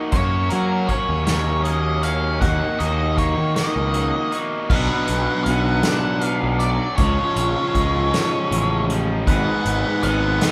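Wistful yet carefree, this short indie rock passage in a straight 6/8 pairs two bright, picked overdriven electric guitar riffs with a dark octave-fuzz lead melody, while an up-front fuzz bass and an acoustic drum kit played with bundle sticks, with a punchy kick and medium-tuned snare, round out a live-in-one-room band sound in moderate large-studio reverb, the chords moving from F# to a second section opening on Bm at 4.7 seconds.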